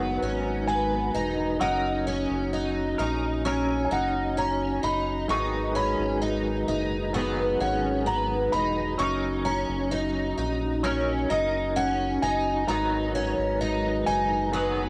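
A felt-muted upright piano carries the melody high in the treble, its soft, intimate tone softened further by cassette tape and analog delay, in this haunting, melancholic dream pop excerpt at 65 BPM in G# minor. A shimmering, octave-doubled twelve-string acoustic guitar picks arpeggios up front through ensemble chorus, while a flute-like tonewheel organ holds sustained chords with key click and a slow rotary speaker, and a hollow-body electric guitar adds tremolo-washed accompaniment in the background. A deep, round analog bass anchors the slow sway between G#m7 and D#m7/F#, all wrapped in light reverb and the hazy intimacy of a home cassette recording.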